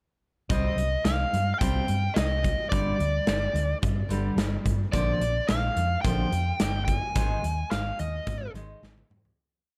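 Quiet-loud alternative rock in C minor at 108 BPM, dark and brooding, this short piece is a single verse moving through Cm, G5, Bb and Ab5 before fading out from 7.2 seconds, with a drum fill entering at 8.8 seconds to close it. A bright, overdriven lead guitar with tape echo sits up front playing a motif-based melody, over fingerpicked steel-string acoustic guitar arpeggios with fresh strings, finger squeak and palm-muted eighth notes, and a round, hollow-body electric bass driving eighth notes. A big, punchy rock kit with a medium-tuned snare holds a pop groove in a big room, all set in light studio reverb.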